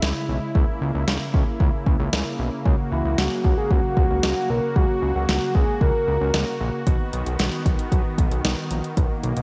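Wistful and nostalgic, this short synth-pop excerpt sets a brassy, detuned sawtooth pad with chorus and a fat, thick analog bass over an up-front deep house drum kit with a deep kick and snare, while a round, mellow octave-layered synth lead with vibrato sings a brief melody from 2.9 to 6.6 seconds, all colored by the character of a home cassette recording and light digital reverb.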